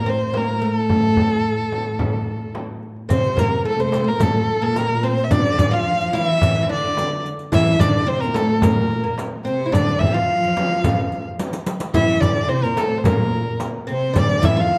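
Bathed in a warm recital-hall reverb, this soulful, melancholic Arabic maqam ensemble fragment is led by a single expressive bowed violin, up front and smooth on top, with vibrato and portamento, over a bright, woody oud playing a plectrum-plucked fretless second line. A distant solo cello holds a drone beneath them until 3.2 s, while a lush, focused studio cello section enters at 3.1 s with its own second line, joined in the background by a close, dry riq with dark jingles. A crisp, compressed, saturated metal-shell darbuka and a large, deep frame drum heard from afar carry the percussion throughout, with a drum fill at 11.4 s.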